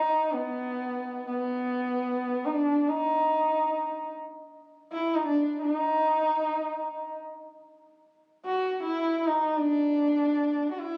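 Solemn and full of longing, this short fragment of Hindustani classical music is cut from a longer performance. A single sarangi plays solo for the full 11 seconds, its bowed tone dark and woody, with sympathetic strings ringing alongside. The player adds light vibrato and portamento, gliding between pitches within a narrow span from Cb4 to Gb4. The instrument sits up front in the sound yet carries a distant quality. Captured on a phone in the room, the recording has a light, club-like reverb around it.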